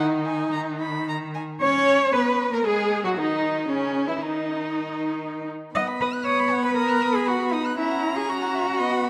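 A stormy, restless string quartet starts together in this quick classical-period fragment in G# minor at 116 BPM with a rubato feel: the first violin sings a focused, vibrato-laden melody alongside the second violin's smooth, even line, while the up-front viola and cello, both sliding with expressive portamento, supply a warm accompaniment and a rich bass as the harmony moves through G#m, C#madd9, B and F#7/C#, set in a wet concert hall reverb lasting 1.8 s.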